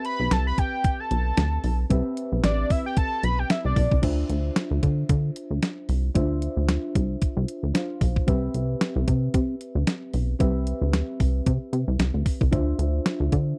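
Early-eighties boogie funk in D dorian at 113 BPM with a swung sixteenth feel, this slick, funky clip opens with a fat, detuned sawtooth lead with vibrato soloing up front until 4.0 seconds, over a thumpy, sampler-style 8-bit drum machine, a punchy, plucky bass with a wave-folded edge, and a soft, round FM electric piano with chorus and a dark warble, all moving between Cmaj7 and Dm9 in a dry, close studio sound.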